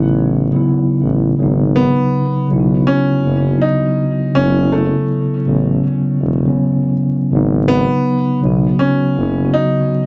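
Lo-fi hip hop at 81 BPM with a swung sixteenth feel, melancholic and hazy, cut from a longer piece. A clear, woody upright piano carries the melody with audible action noise, short sustain and tape echo, over a mellow tine electric piano that supplies the accompaniment with a cassette-tape tint and a tuba that holds the low end with vibrato in a jazz style until 9.5 seconds. The chords move between F#m7 and G#m7 in a moderately reverberant studio room, and vinyl crackle and a dulled top end lend the sound its worn, intimate character.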